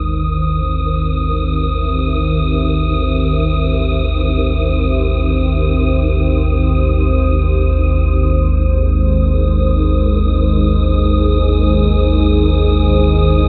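A huge, cavernous reverb with a long 8.3-second tail surrounds this unsettling dark ambient drone, cut from a longer piece and moving in free time. Up front sits a deep, ominous, rumbling drone low in the register, built from triangle and sawtooth tones with a slow attack, long release and lush chorus. Above it a moody, full-bodied analog pad fades in across the whole passage, its detuned sawtooth and sub-octave layers holding sustained chords that shift from C to Ab at 8.0 seconds. An airy, breathy, wind-like tuned noise texture hovers higher up, adding a dusky shimmer of air. At the very start, a barely audible bronze metallophone rings out metallic arpeggios with shimmering beats from its paired tuning, falling silent by 2.4 seconds.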